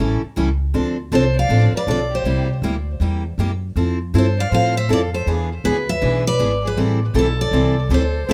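A brisk swung pulse at 159 BPM in 4/4 drives this fiery, virtuosic slice of gypsy-jazz string swing in A minor, cut from a longer piece. From the first moment, an up-front upright bass with a woody, thumpy pizzicato tone anchors the low end beneath a full-bodied, fresh-strung steel-string acoustic guitar picking the accompaniment, its chords moving from A7 through Dm7, C7, Fmaj7 and E7 before settling on Am7. At 1.1 s a single bowed violin slips in as a second line, close and expressive, with vibrato, a soft attack and gliding portamento. A second picked acoustic guitar takes the melody from 1.2 s, bright and concert-toned, sitting up front with a tape echo trailing its notes in the upper register. Light reverb gives the small ensemble a touch of air while keeping the playing immediate and lively.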